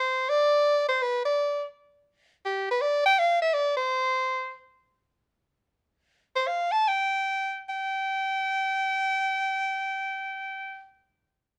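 Light reverb surrounds this playful, relaxed jazz fragment in free time, tuned to A4 = 436 Hz, where a solo soprano saxophone sits up front, breathy and clear with light vibrato and a soft attack, moving between G4 and A5 and slowing down from 4.6 to 7.7 seconds.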